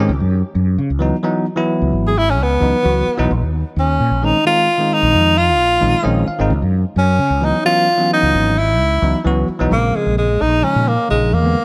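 This excerpt of slick, funky jazz opens with a breathy tenor saxophone soloing up front over a bell-like tine electric piano and a mellow fretless electric bass, all three entering together. Moving in 7/8 at 262 BPM counted in eighths with a straight feel, the music cycles through Dbm11 and Bb9sus4 chords before settling on Bbm7 for a brief closing passage from 9.7 seconds. The saxophone sounds clear and jazz-inflected, with vibrato and scooped notes coloring its lines in the tenor's middle range. The electric piano stays clean and direct in the accompaniment, stepping forward with a short fill between 5.8 and 6.5 seconds, while the round, dark bass sits prominently beneath it with a subtle chorus. A moderate plate reverb and bright 1980s-style digital production give the whole a polished sheen.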